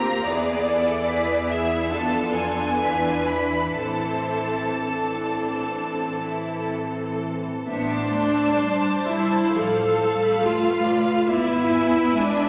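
A wet concert-hall reverb surrounds this solemn, melancholic slow movement for string orchestra in A minor, moving with rubato at 60-72 BPM in 4/4 as it passes through E7, F and E7b9 to Am, later shading into Bm7b5/A and E7/G#. Up front, a focused, rich violin section sings the melody over a second violin line, while a smooth, even viola section carries the accompaniment prominently. A close, lush cello section and a warm double bass section anchor the bass, the basses dropping away at 12.0 seconds, with every part bowed with vibrato.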